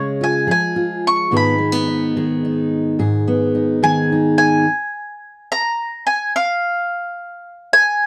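Yearning and wistful, this short folk excerpt moves at 72 BPM in a straight-feeling 6/8, counted in dotted quarters. A woody, double-strung mandolin carries the melody up front throughout, its picked notes ringing between Db5 and Db6 with a touch of slapback echo. Beneath it, a fingerpicked steel-string dreadnought guitar, bright and full-bodied with fresh strings, accompanies from Ab2 to Ab4, shifting from Db to Abm at 1.3 seconds. The guitar stops at 4.7 seconds, leaving the mandolin alone over an unaccompanied passage until 8.1 seconds. Light reverb surrounds a dry, close sound in the manner of a 1970s studio recording.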